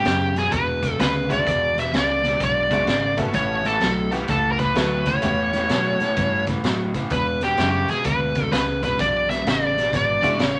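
Electric blues shuffle at 128 BPM in 4/4, swung and laid-back with a swaggering strut, cut from a longer piece. A smooth, overdriven lead guitar carries the melody up front with a picked attack, sitting highest in the mix, while a dark electric guitar at the edge of break-up works a low riff beneath it. A vintage fingered electric bass, foam-muted and round, anchors the bottom, and a raw garage drum kit of hi-hat, kick and high-tuned snare gives a gritty, saturated, small-room thump with a boomy kick and a rolled-off top. From 1.3 seconds a jangly, metallic tack piano adds bright, percussive accompaniment in the middle register. The harmony moves from E13 to A13 at 3.3 seconds and back to E13 at 7.1 seconds, all set in a moderate studio reverb with a tuning of A4 = 439 Hz.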